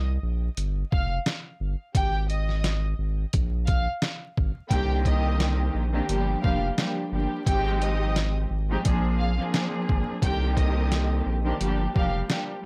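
Dry and crackling with vinyl noise, this gritty hardware recording is a tough, moody boom-bap hip-hop excerpt in C minor at 87 BPM with a swung 16th feel, where a smooth, close violin section carries the melody through filtering and tape echo over a deep, thick saturated sub bass, a pitched-down, compressed sampler-style drum kit with a thumpy kick enters at 0.6 s, and a veiled, con sordino string section adds dark bowed accompaniment from 4.7 s, when the opening break gives way to minor ninth and seventh chords.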